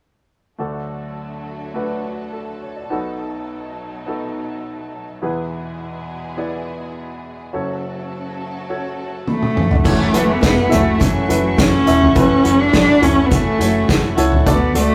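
A straight 4/4 pulse at 104 BPM drives this earnest piano-driven pop excerpt in F# minor, where an intimate grand piano with audible action noise accompanies a lush bowed string section holding sustained chords from 0.6 seconds, before a drum fill at 9.3 seconds brings in an up-front acoustic kit with a punchy kick and a smooth, rich solo cello melody, joined soon after by a very quiet picked jumbo steel-string guitar riff and a plucky, funky analog bass sitting in the background, all in a rough rehearsal-room recording with moderate reverb.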